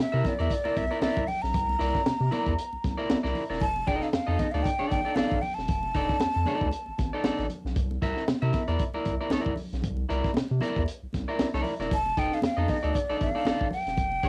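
Hypnotic and sly, this funk groove rolls along in 4/4 with a loose sixteenth-note swing, cut from a longer piece and heard on a homespun cassette recording with light reverb. A crunchy breakbeat kit sets the pulse, its punchy kick, high-tuned snare and hi-hat carrying vintage 12-bit sampler grit and a rolled-off top, while bright, high-tuned congas sit in the background. Underneath, a round analog bass with a deep, sine-like tone and transformer saturation holds down the low end throughout. An electric guitar at the edge of break-up, twangy and picked, stays up front with cassette-tape colour as the harmony moves between C9, F6 and F13. The breathy, hollow jazz flute carries the melody with vibrato and tape echo, dropping out at 7.1 seconds and returning at 11.9 seconds.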